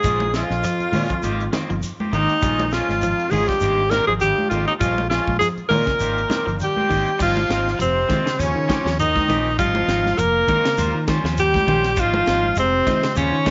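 Afrobeat excerpt with a funky, driving swing, led by a bright, up-front alto saxophone with vibrato over a clear trumpet and a brilliant trombone section in the background, clean hollow-body guitar arpeggios, twangy slightly broken-up guitar stabs with spring reverb, a round, punchy fingered bass, a tight funk drum kit with a high-tuned snare, grainy shekere and ringing congas entering at 0.2 seconds, as the chords move from Bbm7 and Abmaj9 to Ab69 and Eb13 at 7.2 seconds.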